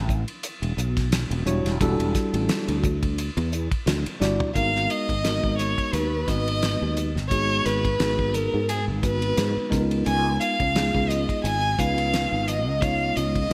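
A growly, up-front fretless bass with ensemble chorus opens this driving, nocturnal jazz fusion piece at 87 BPM in G# dorian. It is joined at once by a damped 70s drum kit with a fat snare, tight kick and gated reverb, swinging the sixteenths. A clean tine electric piano enters at 1.5 seconds, and after a drum fill, a rich bowed violin takes the melody at 4.6 seconds with vibrato, portamento and a soft attack, as the harmony moves from Em9 to G#m9 and then C#13, all in a bright 1980s-style digital sound with moderate plate reverb and small room ambience.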